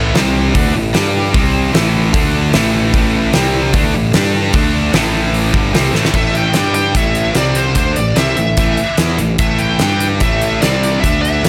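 Heard in a small room, this heavy, aggressive hard rock excerpt in A minor charges along at 149 BPM: a huge arena drum kit sits up front with a fat snare and punchy kick, a round, fuzzy bass, a bright high-gain guitar and a crunchy overdriven guitar tucked behind it grind out the riff, and a very quiet tonewheel organ holds clean, slow-rotary chords until 6.1 s, as a drum fill at 5.9 s leads to a dark, bluesy distorted lead guitar with slapback echo taking the melody from 6.2 s.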